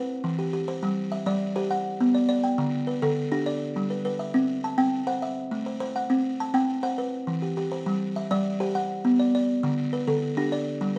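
This southern African traditional piece, heard here as a short excerpt cut from a longer performance, has a rippling, warm mood and a compound metre with a straight feel. A single buzzing kalimba plays solo throughout the 11 seconds, thumb-plucked on a solid board and ranging from D3 up to A5. Its tone is woody and short, with a rattling buzz and a vintage, band-limited character that sits up front in the sound. The harmony cycles through minor and major chords, opening on E minor and returning to it at 7.0 seconds before a brief second section begins at 7.9 seconds. Close, detailed microphones and light reverb keep the instrument intimate and present.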